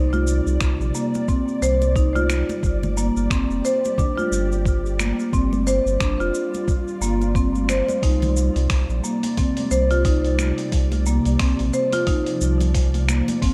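Mystical and earthy, this organic downtempo piece cut from a longer work sets an up-front marimba's arpeggios with tape echo over a round sub bass and an ethereal, detuned pad with chorus and sidechain pumping, while a gritty, tape-warm sampler kit of cabasa, finger snaps and hi-hat, background congas with hard hands, and a thumpy electronic kick entering at 0.6 seconds drift through a light reverb as the chords move from Csus2 to G7(no3) to Cm9.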